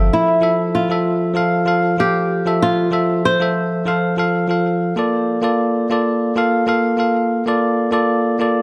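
A moderate plate reverb gives this short sunset chillout excerpt a smooth, blissful glow at 96 BPM, with a gentle 16th-note swing over a Bbmaj7 chord. A bright, bell-like tine electric piano sits clean and up front with digital delay, carrying the accompaniment from the start to 8.6 seconds. A dark, fingerpicked acoustic flamenco guitar, also touched with delay, plays the melody until 4.8 seconds, its audible finger squeaks adding a human texture.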